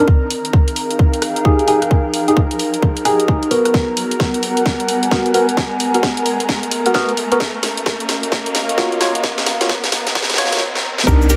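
Late-night and soulful, this two-step UK garage excerpt at 131 BPM with a swung groove builds over a riser and filter sweep as a worn, slightly out-of-tune tine electric piano stabs Fm9, Abm9 and Ebm9 chords through phaser and dub echo, above an airy, breathy pad and a nostalgic, lo-fi tape-like pad that both pump against a tight, up-front electronic kick and a garage kit of bright hats, rim clicks and cracking snare, all threaded with electronic risers and downlifters and drum fills, until at 11.1 s a twangy resonator pluck, a deep, round sub bass and a grainy cabasa arrive just as it cuts off.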